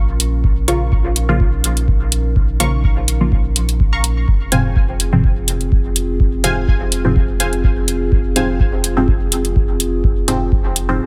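Up-front, phaser-soaked dub chord stabs with a detuned sawtooth bite and a quick filter pluck anchor this cavernous, meditative dub techno excerpt in Bb minor at 125 BPM, with a lightly swung 4/4 feel. A higher, muted stab riff with chorus and dub echo enters alongside them at 0.7 s and drops out at 8.5 s, while a dark, moody analog pad with a slow attack and a moving notch holds sustained chords, shifting from Bbm to Fm at 4.3 s. Underneath, a round sine sub bass with tube saturation and sidechain pumping sits beneath a tape-warm deep kick and metallic, up-front hi-hats, all in a dry space with little reverb.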